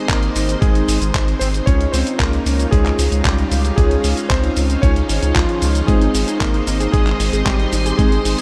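Sunny and playful, this Italo disco excerpt moves at 114 BPM in Ab major, with a warm, vintage electric grand piano with a clangy low end carrying the melody through diffuse ambient delay and shimmer reverb. A lush string machine holds slow-attack chords through phaser and ensemble chorus, while mellow, brassy synth stabs with vibrato and chorus sit alongside, both also bathed in shimmer reverb. Underneath, a round, deep analog bass and a thumpy, gritty electronic kick play beside a dusty, compressed sampler-style kit of cabasa, handclaps and hi-hat, and a very quiet, detuned unison pluck slips in with arpeggios at 5.9 s.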